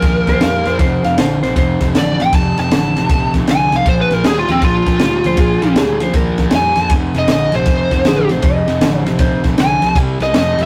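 Swaggering and gritty, this electric blues shuffle rolls along at 157 BPM in F mixolydian, with a biting overdriven lead guitar carrying the melody through analog delay while an up-front, hollow-bodied semi-hollow guitar plays the riff. A round, foam-muted vintage bass and a compact cocktail kit with a punchy kick, high-tuned snare and dark ride cymbal hold the groove, as a compressed, slightly broken-up slide guitar adds a second line from 0.3 to 1.9 seconds and again from 5.3 seconds. The rough rehearsal-room sound carries saturation and light reverb, and the cut comes from a longer piece.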